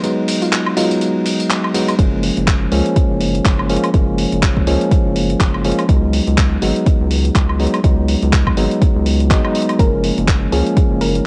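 Deep house with a soulful, relaxed mood and a swung 4/4 groove, heard here as a short section cut from a longer piece. A bell-like tine electric piano plays up-front stabs throughout, carrying vintage 12-bit sampler grit, sidechain pumping and analog delay. Alongside it, a dusty soul sampler-style kit of handclaps, hi-hat, ride cymbal, tambourine and woodblock adds gritty, compressed percussion. A soft round pluck with chorus plays a brief, mellow melody in the background at the opening and returns near the close at 9.8 seconds. At 2.0 seconds the groove fills out as a round analog bass with tube saturation and pumping arrives together with an overdriven, layered electronic kick placed up front. The harmony moves between C#7sus4 and F#maj9, and the recording has a home-cassette character with light reverb and digital ambience.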